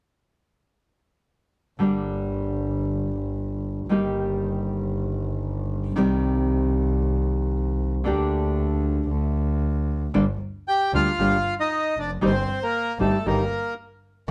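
A rubato tango in 4/4 at 115 BPM, this short excerpt cut from a longer piece sits in G minor and carries a passionate, melancholic mood. From 1.8 seconds a fingerpicked nylon-string guitar, full-bodied and deep in its classical tone, lays down the chords up front, joined by a single bowed double bass whose clear, earthy sound carries a light vibrato and an airy bow. The harmony moves from Gm through Eb/G and Cm to Gm/D, passes through a brief chordless moment, then returns to Gm and Eb/G for the second section. At 10.7 seconds a reedy bandoneon enters with the melody, its boxy small-room character touched by plate reverb and ranging up to G5 before it stops at 13.7 seconds. The overall production is dark and warm with light reverb, keeping all three players up front.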